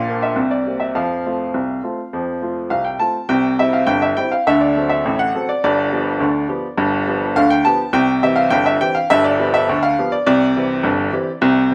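A woody, polished upright piano plays solo and up front in this lively, playful ragtime fragment in straight two-time, cut from a longer piece, moving into a new passage at 3.3 s that shifts to C major and passes through D7 and G7 chords, all set in a moderate stone-room reverb that gives the live performance its sense of space.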